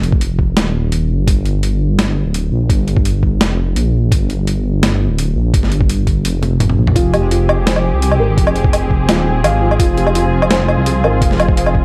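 A deep, rumbling detuned saw bass sits up front through this tense, spacious half-time drum and bass piece in F minor at 169 BPM, cut from a longer track. Alongside it, a gritty, pitched-down boom bap sampler-style kit with a high-tuned snare, hi-hat, toms and woodblock pairs with a thumpy electronic kick, both in studio reverb, and a drum fill at 6.4 seconds leads in. At 7.0 seconds, veiled con sordino strings add sustained chords with sidechain pumping, while a mellow felt-muted upright piano, with audible action noise, plays delayed arpeggios in the background.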